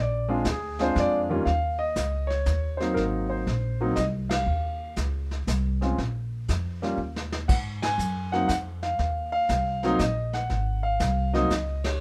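This excerpt from a jazz piano trio opens on a short grand piano solo over a Bb9 chord, with pizzicato upright bass underneath and brushed drums coming in at 0.4 seconds. The tune is a playful, swinging waltz at 120 BPM in 3/4, with a lilting swing on the eighth notes. The concert grand carries the melody with a warm, open tone and a deep low end, moving through Eb5, Ab9, Ebsus2 and Bb5 chords. The bass sits up front with a woody, thumpy steel-string sound, and the vintage brush kit stays dark and smooth, with a small-room sound, a punchy kick and a rolled-off top. A drum fill at 7.0 seconds fills a brief break in the harmony before the Ab9 returns, and the whole band hits accents at a few points along the way. A light reverb rounds out the trio's sound.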